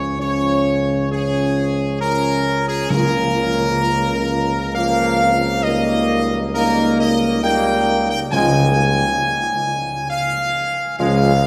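Drenched in a long cathedral reverb, this triumphant, regal classical brass passage in Db major moves at a stately 67 BPM in 3/4. A bright trumpet section carries the melody up front, while dark French horns, kept very quiet, and trombones hold smooth, lightly vibrato chords. A mellow, soft-edged tuba sustains a low Db beneath harmonies moving from Db through Bbm/Db and Eb/Db back home, and very quiet timpani struck with hard mallets sound briefly at 2.9 and 8.3 seconds.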